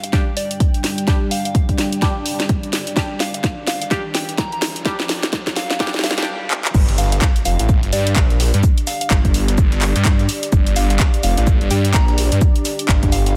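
A dense, heavily limited digital mix of bouncy, gritty bass house, cut from a longer piece, in which a punchy overdriven kick, cracking house drums with bright hats, claps and crash, a moody detuned sawtooth pad with sidechain pumping, a soft chorused FM bell melody and a nasal band-passed chord stab build through a filter sweep and a faint electronic riser until the drop and impact at 6.7 s, when a thick, swirling phased saw bass and a very quiet pitched-up, tape-warm breakbeat kit join.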